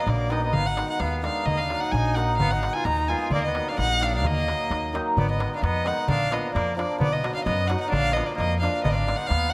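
Pushing along at 130 BPM in a lightly swung 2/4, this restless, virtuosic Balkan wedding-band fragment in Eb harmonic minor puts a nasal, vibrato-laden bowed violin up front with a slapback echo on the melody, joined by a mellow, distant trumpet on the second line, while a shimmering hammered dulcimer rings out the accompaniment, a woody, thumpy pizzicato upright bass and a crisp metal-shell darbuka in the background enter at 0.1 seconds, and the harmony moves from Ebm and Abm toward Bb and B as the second section begins at 5.2 seconds inside a moderate scoring-stage reverb.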